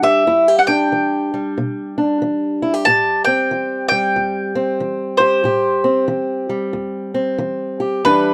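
A bright, woody mandolin with doubled strings carries a mournful, smoky melody up front, joined from the start by a boxy, fingerpicked old ladder-braced acoustic guitar accompaniment, in this brief fragment of an acoustic country blues duo at 93 BPM in a swung 4/4, tuned to A4 = 442 Hz, moving from Em7 to Am7 at 2.9 seconds and captured as a dry, close 1970s-style studio recording with light reverb.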